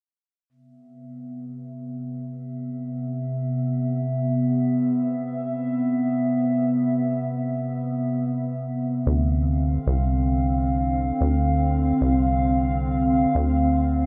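In free time, this playful, intricate IDM excerpt in C major opens at 1.1 seconds with a warbling, nostalgic pad whose lo-fi sampler grit, chorus and slow-blooming sustained chords sit up front over a Cmaj7. At 9.1 seconds the harmony moves to Dm7 as a deep, rubbery acid bass enters with saturated, resonant filter plucks. A huge ambient reverb soaks the whole dreamy mix.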